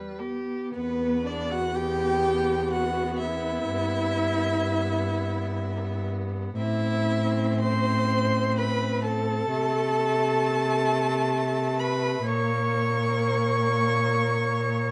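Rubato beats sway unevenly in a slow 3/4 at 62 BPM, opening a solemn, elegiac classical string quartet movement in E minor, cut from a longer piece. The cello, clear and up front, carries the bass. A distant viola with expressive portamento and a distant second violin, both rich in tone, support the harmony through Em, Am and a closing A#m, and at 0.8 s the close lead violin enters with a smooth, vibrato-laden melody. The dark production sits in the moderate reverb of a large studio.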